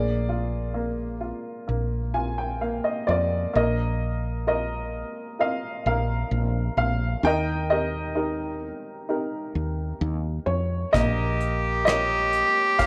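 A slightly detuned, worn upright piano carries the melody in plate reverb over a round, woody fretless electric bass in this intimate, heartfelt acoustic folk-pop ballad cut from a longer piece, with the piano adding a fill at 1.7 seconds before a reedy, gut-string bowed cello and a dark, soft brush kit with tight kick, hi-hat and rim click join at 10.9 seconds as the harmony turns from Eb to Bbm.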